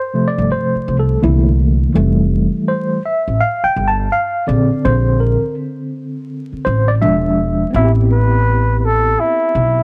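A dry, gritty recording dusted with vinyl crackle frames this mellow, nocturnal jazz-hop fragment, which swings gently on the sixteenths and is cut from a longer piece. A worn, slightly out-of-tune tine electric piano with medium tremolo, heard through a combo amp, opens the piece, moving through lush extended chords from a rootless G7sus4 to an Fmaj9 and an E7b9. A woody pizzicato upright bass joins at 0.4 seconds. At 7.8 seconds, as the harmony settles on Am9, a vintage-toned flugelhorn enters up front with light vibrato and scooped notes.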